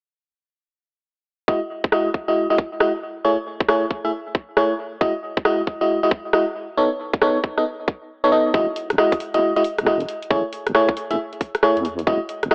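A glassy FM electric piano opens at 1.5 seconds with bell-like, warbling stabs on Emaj9, joined at once by a tight, up-front electronic kick and, moments later, a garage kit of metallic hats and rim clicks, its hats filtered to a softened edge. This soulful, sunny two-step garage cut runs at 136 BPM in E major, its swung sixteenths giving the groove a skipping lilt. The piano's vintage tone carries chorus, a low-pass filter and an analog delay as it moves through Amaj7 and B9, with a faint noise layer beneath each decaying stab. At 8.5 seconds a deep, dark wobble bass enters, detuned and compressed, blending sawtooth and sine with a chorused shimmer and sitting low in the mix under the returning Emaj9 and Amaj7 chords. Light digital reverb frames a dry, gritty sound with the character of cassette tape and the narrow bite of AM radio, and the passage is cut from a longer piece.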